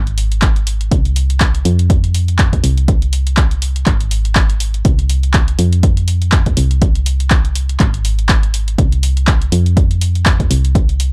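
Dry and gritty, this short cut from a longer piano house track has a bittersweet, soulful mood at 122 BPM in 4/4, with a light swing on the sixteenths. A dark, round FM bass with a fast attack and decaying notes sits up front from 0.0 seconds, pumping under sidechain. Handclaps and hi-hat from a punchy, tape-warm analog drum machine come in at 0.1 seconds, and a punchy electronic kick, re-recorded in a small room, lands up front from 0.4 seconds.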